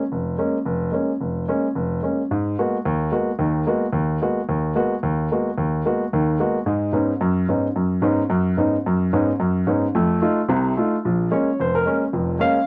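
A dry, close 1970s-style studio sound with studio reverb frames this short jazz fragment for solo upright piano, cut from a longer piece. The woody, natural-toned piano sits up front and swings through a searching, spiritual passage that reaches from deep bass notes into the upper middle of the keyboard. Its harmony moves from Bbm7 through G#m9, Badd9 and F7 before returning to Bbm7 at 11.0 seconds.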